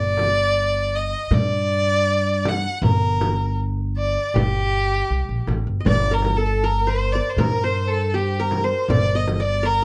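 A single clear violin leads this short excerpt of an Arabic maqam ensemble, its focused, bowed tone carrying a longing, soulful melody with vibrato, sitting up front yet with a slightly distant quality. The piece moves at a relaxed 79 BPM in 4/4 with a straight feel, set in G minor and tuned to A4 = 437 Hz. Beneath it, a woody pizzicato upright bass with steel strings anchors the low end, also placed prominently in the mix. A darbuka with a clay shell and natural skin, played with soft hands, sits in the background alongside a deep, large frame drum struck with hard hands, both heard in a live-room sound from 0.2 seconds. At 5.8 seconds a qanun joins as a second line, its fingerpicked triple strings adding a bright-edged shimmer to the texture. Light reverb gives the ensemble a gentle sense of space.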